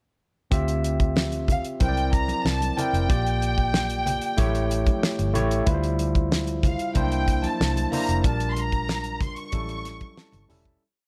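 Cinematic and silky, this short, lush 1970s-style soul piece moves at 93 BPM in D minor, with a damped 70s drum kit laying down a smooth mid-tempo groove of fat snare and tight kick while a dark, foam-muted fingered electric bass plays a round, punchy melodic line with slides. A barky, overdriven tine electric piano pushes gritty drop2 chords through a combo amp, adding grace notes and short fills, while thin-skinned congas play a syncopated groove with hard hands in the background. From 1.5 seconds a studio violin section carries a motif-based melody with vibrato and a smooth top over the chords Dm11, C9, Bb6 and A7, before the piece fades out from 8.2 seconds under a final electric piano fill in a small room.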